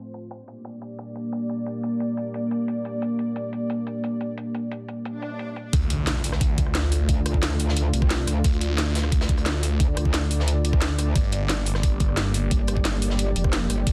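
A metallic, aggressive wobble bass with distortion and chorus sits up front in this mechanical, tense slice of dark technical drum and bass, running at 177 BPM in 4/4 with a straight feel in D minor. The opening rests on a deep, moody analog pad of detuned sawtooth and triangle tones with a sub octave, holding slow-attack chords over Gm with chorus and sidechain pumping. Beneath it, an electronic drum kit with a cracking snare, rim clicks and metallic hats is softened by low-pass filtering as a filter sweep builds. A background swell and impact arrive at 5.1 seconds and lead into the drop at 5.7 seconds. There, a knocking, overdriven electronic kick lands up front, joined by a swirling, thick phased saw bass and a very quiet, gritty breakbeat kit with a medium-tuned snare and a rolled-off top, as the harmony moves to Dm and later back to Gm. The wobble bass enters at 7.1 seconds, all within light digital reverb and a dense, heavily limited modern master.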